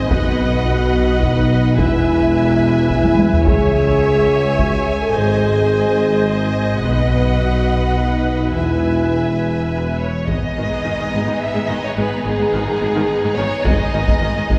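Heard from further back in a reverberant concert hall, this dramatic, heroic cinematic orchestral cue at 107 BPM in 3/4 carries an expressive, portamento-tinged violin melody over a focused second violin line, lush violas and very quiet cellos, with dark French horn chords, a clear double bass section and a mellow, distant tuba anchoring the bass, while a close, dry taiko ensemble drives throughout with a fill at 3.0 seconds, a barely audible timpani touches in at 5.2 seconds, and the harmony settles into G# minor at 10.3 seconds.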